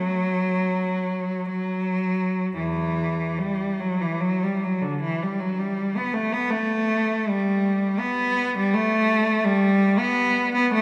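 A rich, focused cello plays alone in this meditative, lonely classical fragment, bowed by a single player with vibrato and ranging from E2 to B3. Set in 3/4 with a free, rubato feel that drifts between 46 and 87 BPM, it sits up front yet sounds distant, bathed in a wet church reverb with a long 3.6-second decay. A brief opening passage gives way at 2.6 seconds to a second section that carries through to the cut at 10.8 seconds.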